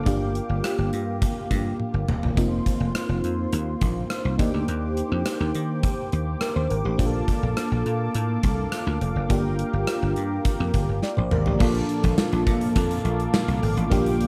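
A dry, close-sounding 1980s-style pop excerpt at 104 BPM in Bb major, uplifting and romantic, where a lush, dreamy FM electric piano with chorus and phaser and a brassy, detuned analog pad carry the chords from Gm7 through F7sus4, Ebmaj7 and Bbmaj7 over a punchy, foam-muted thumbed slap bass and an up-front gated drum kit with bright cymbals, tambourine and drum fills at 1.8 and 11.0 seconds, before a dark, very quiet overdriven guitar enters at 11.6 seconds.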